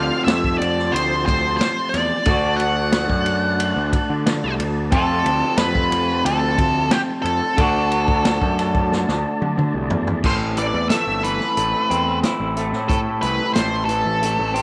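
This hypnotic, dark psychedelic rock excerpt opens with an octave-fuzz lead guitar up front, its distorted tone given a slapback echo. Beneath it sit a slightly broken-up rhythm guitar riff through a small old amp, lo-fi and compressed with harmonic tremolo, and a picked electric bass that is overdriven into fuzz, heard both direct and amped. A very quiet tonewheel organ holds clean sustained chords through a slow rotary speaker, with chorus vibrato and key click. A vintage drum kit enters at 0.3 seconds, with a small-room sound, a punchy kick, a medium-tuned snare and a rolled-off top, and it plays a fill from 8.9 seconds. The harmony moves between F and D chords before settling on A minor at 10.2 seconds, where the lead guitar takes a solo, all set in a light studio reverb.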